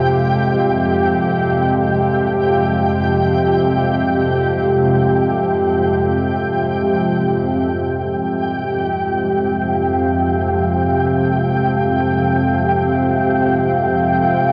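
A worn, warbling tape sound with audible pitch drift hangs over this dark ambient drone, all of it steeped in a cathedral-like reverb with a long 4.8-second decay. In free time and F minor, the cavernous, brooding mood rests on a sustained Fmadd9 chord heard from the first moment. A deep, nasal analog pad holds sustained chords up front, thickened by a lush chorus and a sub octave. Beneath it, an organ-like drone sits low and calm, its detuned unison voices blurred by ensemble chorus, and a filter sweep moves across it through the first 7.6 seconds. High above, a flickering, grainy texture glints on a single sustained note, faint and set back behind the other parts. All three voices run unbroken through this 14.5-second excerpt cut from a longer piece.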